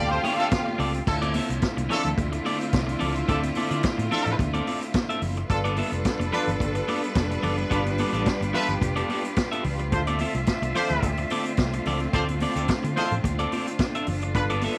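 A glamorous, driving disco excerpt opens with a lush symphonic violin section carrying a smooth-topped second line for just 1.1 seconds, while a clear studio string section holds vibrato-rich sustained chords and a tight horn section fires roomy stabs up front over a growly fingered electric bass. A slightly broken-up, compressed electric guitar adds picked accompaniment, and a vintage acoustic drum kit with punchy kick, dark cymbals and medium-tuned snare sits up front beside very quiet, high-tuned congas. The harmony moves from Dm7 to G9 at 5.5 seconds and back to Dm7, set in light reverb and small room ambience.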